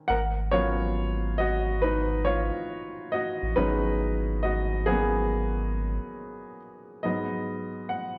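A moderate hall reverb surrounds this brief, nostalgic lo-fi hip hop passage, where an intimate, woody upright piano sits up front with audible action noise and short, low-pass-filtered sustain over a swung groove. A deep, round sub bass supports the piano's G#m11 chord until 6.0 seconds, after which the piano carries on alone and shifts to G#m7 at 7.0 seconds, ending the reflective fragment at 8.2 seconds.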